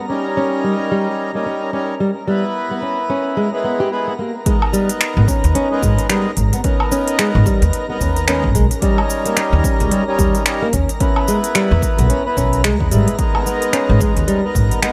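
Thumb-plucked nylon-string guitar arpeggios with digital delay and a sparkling granular shimmer in the background open this hypnotic, meditative organic downtempo excerpt at 110 BPM in G# harmonic minor, joined by a reedy, breathing hand-pumped harmonium up front with sidechain pumping and delay, before a punchy layered electronic kick and an overdriven organic electronic kit of finger snaps, smooth hi-hat, shaker and woodblock enter at 4.5 seconds, with a woody, growly pizzicato upright bass with tube saturation arriving at 5.2 seconds over a swung D#7, E and G#madd9 progression in light small-room ambience.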